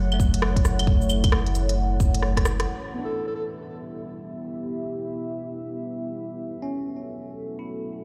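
Heard as if through a big sound system in a bare room, this wistful, ghostly future garage excerpt blooms in a large studio reverb, with a deep, moody pad of detuned sawtooth and sine layers and a bell-like tine electric piano, both pumping to the sidechain over F#m7 and then Em7. A round sine sub bass, a tight tape-toned electronic kick and a swung, filtered kit of cabasa, claves, smooth hi-hat and rim click drive the opening, and after a drum fill and band accent the rhythm section has dropped out by 2.7 s, where a filter sweep on the phased, delayed electric piano begins. A mellow alto saxophone with vibrato and subtone then slips in briefly at 3.0 s, roughened by 12-bit sampler grit and delay.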